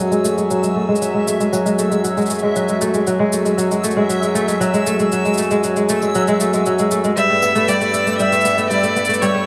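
A straight 4/4 pulse at 117 BPM, set by an overdriven, electronic cabasa, drives this delicate, intimate folktronica fragment, where a crisp, fingerpicked kora plays arpeggios through a filter sweep over reedy, breathing pedal harmonium chords and a dreamy, reversed granular texture up high, with the harmony moving from F#madd9 to Gadd9 at 7.2 seconds as a smooth, bowed violin with vibrato enters on the melody, heard in a moderate studio room with vinyl crackle.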